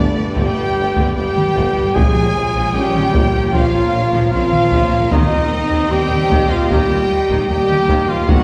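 Distant taiko drums struck with hard sticks enter at 0.4 s beneath a heroic, adventurous orchestral film cue heard from further back in a reverberant scoring stage, where a lush violin section carries the melody over a background violin line and very quiet, pure flutes, while tight French horns and close trombones sustain chords, a mellow solo trumpet adds stabs, smooth violas accompany, cellos, double basses and a punchy tuba anchor the bass, and dry timpani sound briefly from 5.1 s.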